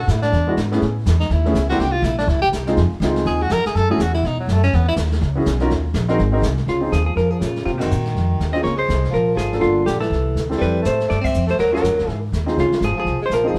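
A clear, present tenor saxophone with vibrato and subtone solos up front for the first 6.7 seconds of this relaxed, sophisticated small-group swing and bop at a brisk 245 BPM, over woody, thumpy pizzicato upright bass, an intimate concert grand piano with audible action noise, and a distant, roomy brush kit with dark cymbals and a boomy kick, before a dark, clean hollow-body electric guitar takes the melody at 6.7 seconds and the band hits accents at 7.8 and 11.2 seconds, the group playing together in one room with wet studio reverb.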